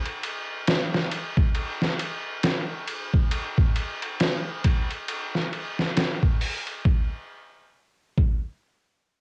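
A gritty, pitched-down sampler-style drum kit carries this dark, smoky trip hop excerpt, playing from 0.1 to 8.5 seconds at a slow 68 BPM in 4/4 with a loose 16th-note swing. Its thumpy kick, medium-tuned snare, hi-hat and ride cymbal sit up front, compressed and tape-warm from a cassette, as if re-recorded in a small room. The home cassette recording carries a light reverb, and the groove moves into a new section at 6.8 seconds.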